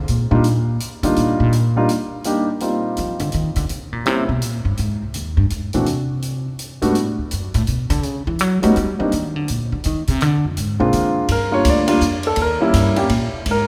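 A swinging 3/4 pulse at 166 BPM drives this playful jazz piano trio excerpt in Eb major, cut from a longer piece and set in the moderate reverb of a church or concert hall. The upright bass leads as soloist from 0.0 to 11.3 seconds, its pizzicato steel strings sounding woody and growly and sitting up front. A swinging big-band drum kit keeps time on hi-hat, ride cymbal and a punchy kick, placed further back in the balance with a natural studio-room character. The grand piano, intimate and warm with audible action noise, takes over the solo from 11.3 seconds to the close at 13.7. The harmony moves through rich colours such as Ebmaj9 and Eb6, a passage marked N.C., and altered dominants like Eb7#9 before settling on Gm7 and Eb7b9.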